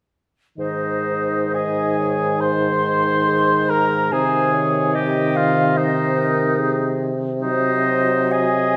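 A close, up-front bassoon with mellow vibrato anchors the bass of this tender, serene excerpt from a slow romantic movement for wind quintet in Ab major, where from 0.6 s a distant, airy flute with a straight tone carries the melody over a light-vibrato oboe second line, a smooth-topped clarinet and a warm, gently vibrant French horn in accompaniment, all moving at 61-73 BPM in a rubato 4/4 through Ab, Ab/C and Ab7/C inside a reverberant recital hall.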